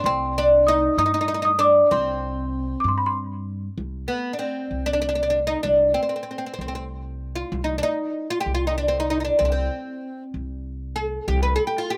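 Hypnotic and soulful, this cut from a longer Persian modal ensemble piece moves at 64 BPM in a straight 6/8 in C avaz esfahan, with an up-front, woody, plectrum-plucked fretless oud carrying the melody through slapback echo, a sweet, bell-like, slightly out-of-tune worn celesta adding a second line with its own slapback echo until 3.2 seconds, and a dark, thumpy pizzicato upright bass on gut strings anchoring the low end until 11.6 seconds, all captured dry in an open-air setting.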